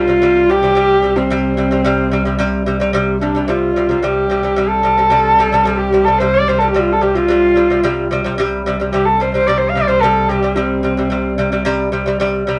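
Mongolian folk in a traditional vein, this short excerpt sounds vast and proud, with a husky horsehead fiddle up front carrying an expressive bowed melody full of vibrato and portamento until 11.7 seconds. Beneath it a bright, delicate lute plays fingerpicked arpeggios on double nylon strings, while a double bass bowed sul tasto holds an intimate, airy drone with light vibrato through to 12.6 seconds. The band plays live in one room with moderate studio reverb and a soft, rounded top end.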